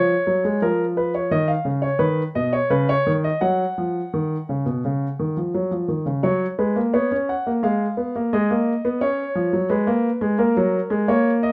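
A grand piano opens on a rootless B-flat minor chord before settling into a contemplative, serious baroque-style two-part invention in straight 4/4, its lines ranging from B2 to F#5. The solo concert grand sounds up front and open, with a deep bass, set in a moderate, large studio reverb. The first section runs from 0.6 seconds, and a second section begins at 6.2 seconds, moving through a diminished chord before returning to F-sharp major as this passage, cut from a longer piece, closes.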